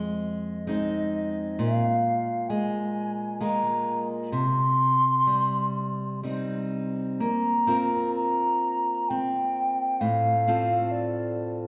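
This Celtic folk slow air moves at a free, rubato 65 BPM in 3/4, and its mood is mournful and haunting. A fingerpicked steel-string acoustic guitar opens at 0.0 seconds, its fresh strings ringing and an occasional finger squeak audible. A hollow wooden flute joins at 0.2 seconds to carry the melody in a mellow, pure voice with vibrato and tongued notes, sounding both up front and slightly distant. The harmony drifts from Fm7 through Bb5 and Cm, then turns at 7.2 seconds to Bbsus2 before settling on F/A. A lush recital-hall reverb surrounds both instruments, and the highs are rolled off, giving this fragment of a longer piece a soft, dusky glow.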